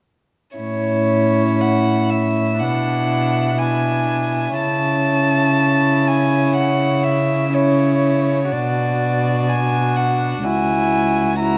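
Classical string quartet in a slow, romantic movement at 61 BPM in 4/4, tender and serene, with a rubato feel in A major, heard as an excerpt cut from a longer piece. A close, intimate first violin with light vibrato carries the melody over a distant, floating second violin line and a pure viola accompaniment, while a rich, up-front cello anchors the bass, all four players bowing sul tasto with soft attacks from 0.6 to 11.6 seconds. The harmony moves from A through E7/B and A/C# to B minor before settling on an open F#7 over C#, all in the moderate bloom of a recital hall.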